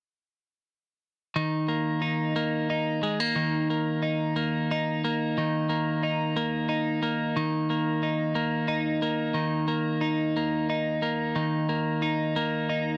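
In a swaying 6/8 lilt, this romantic pop excerpt features a lone twelve-string electric guitar, bright, twangy and compressed, picked cleanly and up front with light reverb in a dry, close 1970s-style studio sound, entering at 1.4 seconds on an Eb5 chord and moving to Bbsus4/Eb at 5.4 seconds.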